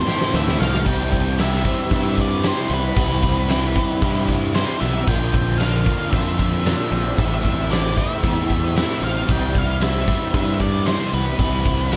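Hazy and blissful, this shoegaze and dream pop excerpt moves at a straight 114 BPM in C major. It opens with a drum fill and a brief, breathy pad that fades by 0.8 s, then drifts through Am7, Cmaj7 and Bbadd9 chords. A dark octave-fuzz lead guitar with slapback echo carries the melody over two overdriven semi-hollow guitars playing riffs, one with lush chorus and the other set further back with reverse reverb, while a very quiet, twangy clean electric guitar picks arpeggios, a punchy picked bass anchors the low end, and a big, up-front arena drum kit with a fat snare is joined by a jingly tambourine in the background.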